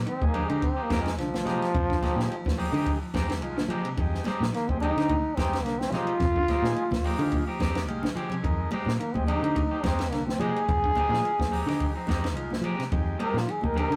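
Afrobeat with a driving, defiant mood, this short cut from a longer piece rides a lightly swung groove on a single Fm9 chord. A clear, punchy trombone carries the solo up front, with vibrato and a smooth top in a pop style. Underneath, a fingered electric bass sits dark and round with a foam-muted tone, while a compact cocktail drum kit sounds dry and natural, with a punchy kick, high-tuned snare, dark cymbals, hi-hat and ride. Bright, high-tuned congas with hard hands sit compressed and saturated in the background, joined by a buzzy vintage combo organ with light vibrato that adds a fill at 7.3 seconds, just before a drum fill at 7.9 seconds. Two electric guitars fill out the texture: a clean, picked one plays tremolo-treated arpeggios in the background, and a twangy one at the edge of break-up adds stabs through spring reverb. The whole has the rough feel of a rehearsal-room recording, with tube saturation and a moderate small-room ambience.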